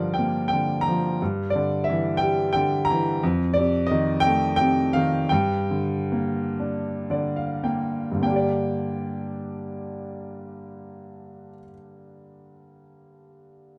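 Wistful and melancholic, this short cut from a longer classical piece features a warm, boxy, up-front grand piano playing a lyrical solo in G minor and 6/8 at a rubato 32-60 BPM in dotted quarters, moving from Gm7 through Gm6 and F7 back to Gm, slowing from 3.2 to 8.2 seconds and adding a fill at 6.6 seconds before a new section begins at 8.2 seconds, all in light reverb.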